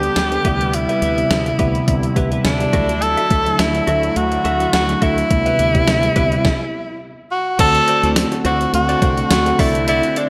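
This 1980s-style pop cut, taken from a longer piece, moves at a relaxed 105 BPM in 4/4 with a light sixteenth-note swing, carrying a romantic, nostalgic mood in D mixolydian over chords that drift between Cmaj7, Dadd9, D7 and C69. Up front, a warm tenor saxophone sings the solo melody with vibrato, a punchy attack and a smooth top. A clean tine electric piano heard through its built-in speakers supplies the accompaniment, while a very quiet, bright pad of detuned sawtooth, triangle and sine layers with a sub octave sustains the chords, its resonant filter swell and slow attack lending an evolving sheen. In the background, a direct-recorded, compressed electric guitar plays a picked riff bathed in lush chorus, and a dark, round, hollow-bodied fretless bass anchors the low end until 10.0 s. A thumpy, overdriven drum machine sits prominently with gated-reverb snare, kick, crash, hi-hat and tambourine, all set in a generous concert-hall reverb, and the groove breaks for a stop at 6.4 s before the next section arrives at 7.6 s.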